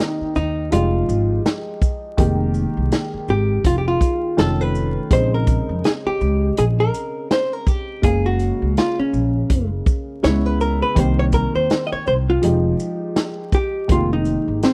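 A clean, compressed hollow-body jazz guitar sits up front over a dark, slightly detuned upright piano and a vintage drum kit of punchy kick, snare, hi-hat and shaker with a rolled-off top, joined at 0.2 seconds by a woody pizzicato upright bass, in this smoky, nocturnal swung jazz-hop excerpt whose guitar takes a solo from 2.2 to 13.9 seconds over minor-ninth and eleventh chords, all captured as a dry, close 1970s-style studio recording dusted with vinyl crackle.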